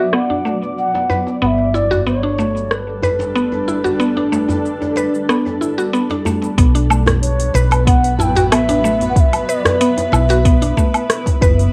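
A woody, mallet-like synth pluck sits up front with bright, percussive arpeggios, its chorus, tape echo and plate reverb giving it a shimmering edge in this earthy, meditative organic downtempo excerpt at 93 BPM in B minor. Above it, a mellow bansuri carries the melody with an airy, bamboo tone and rolled-off highs, treated with cassette tape, tape echo and plate reverb. A granular cloud pad holds blurred, evolving sustained chords with sidechain pumping, while a dark, round fretless electric bass anchors the low end and pumps in the same way. An afro-pop drum kit with metallic hats, rim click, shaker and woodblock keeps a straight 4/4 feel alongside a hard-handed djembe with metal rattles. The harmony moves from Bm to Gadd9 at 1.4 seconds and settles on B5 at 6.6 seconds, where a deep electronic kick drum joins, all heard through the soft, filtered haze of a home cassette recording in a moderate room.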